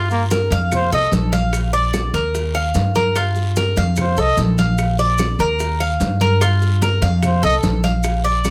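A breathy, whispered trumpet with close-miked vibrato takes the solo in short phrases up front, over a bright, metallic tres picking arpeggios and a growly pizzicato upright bass, while soft-handed congas, tight high-tuned bongos, woody claves, a raspy guiro and grainy maracas sit in the background of this sunny 148 BPM Cuban son and guajira excerpt cycling through Gm7, F, Bb and Ebadd9 in light reverb.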